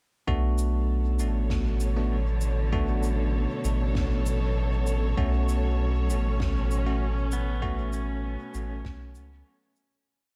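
At 0.3 seconds this meditative, spacious ambient dub piece in B minor opens at 98 BPM in a straight 4/4, with a dark chamber string section bowing slowly shifting chords, their expressive vibrato and soft attack roughened by a vintage 12-bit sampler grit. A bell-like, bright tine electric piano scatters sparse chord stabs, one shape moved in parallel and trailed by dub echo, while a round, deep sub bass sits up front with long gliding notes and a soft electronic kick thuds in the background under studio reverb. A sparse echoing beat of acoustic shaker and medium-tuned snare adds a natural hall feel, and a very quiet, breathy wind-like noise layer holds a high note across the Bm7 to F#m harmony, all inside a small room ambience. The piece begins to fade at 6.8 seconds, and at 7.3 seconds a twangy pedal steel guitar, played with fingerpicks and slide, enters with volume swells and one slow looping arpeggio that drifts into dub echo.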